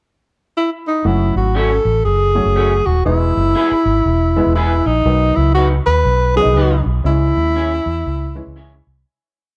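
Passionate and driving, this short soul piece moves at 120 BPM in 4/4 with a swung eighth-note feel, set in F# dorian. A breathy tenor saxophone carries the melody from 0.6 seconds, up front and mellow with light vibrato, scooped notes and a smooth top, spinning a free, jazz-style solo line. Underneath, a vintage foam-muted electric bass sits equally forward with a round, amped tone, playing a melodic, syncopated soul line laced with chromatic approach notes, while an upright piano adds woody, natural push-rhythm chords in close voicing with grace notes. Lower in the mix, an electric guitar through a small old amp cuts short, twangy, slightly broken-up chops on the backbeat, its lo-fi sound bathed in lush chorus. After a pickup bar the verse starts at 1.1 seconds, cycling through F#m, E, B and C#m, and the piece fades out from 7.1 seconds inside a dark, warm production with light reverb.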